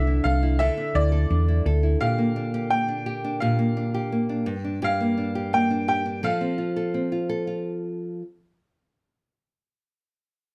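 A dark, warm-toned production with moderate studio reverb frames this easy-going, carefree excerpt of acoustic pop in F major at 85 BPM, where a bright, woody, slightly detuned upright piano with plate reverb carries the melody until 7.3 seconds over boxy fingerpicked nylon-string guitar with audible finger squeak, while a round, punchy hollow-body electric bass sits up front only until 1.9 seconds as the chords move from Dsus2 through Bb6 and Gm7 to F.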